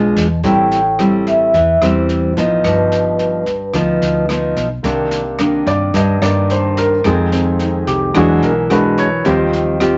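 Bossa nova with a smooth, wistful mood, cut from a longer piece, where an up-front, thumb-plucked nylon-string guitar and a dark, round hollow-body electric bass carry the whole stretch beneath airy brushed drums, while mellow soft-mallet vibraphone rings out the melody until 4.5 seconds before an intimate concert grand, rich in deep bass and audible action noise, takes a solo from 4.8 seconds over a turn to minor-key harmony.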